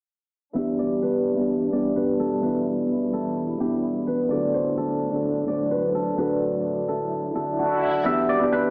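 A half-time hip hop pulse at 128 BPM in E minor frames this dark, eerie fragment cut from a longer piece, where a bright, fingerpicked Celtic harp enters at 0.5 s with accompaniment and a silvery guzheng, played with fingerpicks, carries the melody up front, both rounded off by a low-pass filter. Beneath them a muted symphonic string section holds veiled, con sordino chords with light vibrato, moving from Em7 to D, while an electronic swell sounds in the background from 6.9 s. A filter sweep runs through the whole, and the lush hall reverb and AM radio coloring give it a distant, haunted air.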